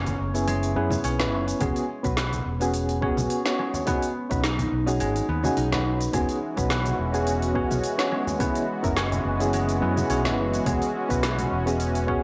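Sunset chillout at 106 BPM with a gentle 16th-note swing, blissful and sunny, where ringing, fingerpicked concert harp arpeggios with tape echo, a chorused fretless electric bass, mellow electric-piano-like synth keys with tremolo, a smooth R&B kit with woody snare and shaker, low-tuned congas played with soft hands, and a deep electronic kick entering at 1.6 seconds move through F#9sus4, E69 and B6 chords, joined at 6.1 seconds by a thick, nasal detuned unison pad with 12-bit sampler grit, all set in a digital ambience with a dry, gritty hardware character in this excerpt from a longer piece.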